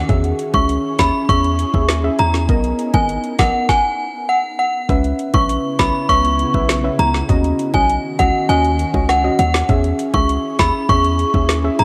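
An ethereal, detuned pad with pumping sidechain and hazy cassette character opens this hypnotic, bouncy dancehall excerpt at 100 BPM alongside a punchy, heavy 808-style bass, soon joined by a soft, round pluck, a knocking, up-front electronic drum kit with woody snare and metallic hats, a chiming, inharmonic FM synth melody carrying tape echo, and low-tuned bongos played with hard hands from 0.5 seconds, all moving through E6, Bmaj7, Dbm7 and Ebm7 chords in a lightly reverberant home-cassette sound.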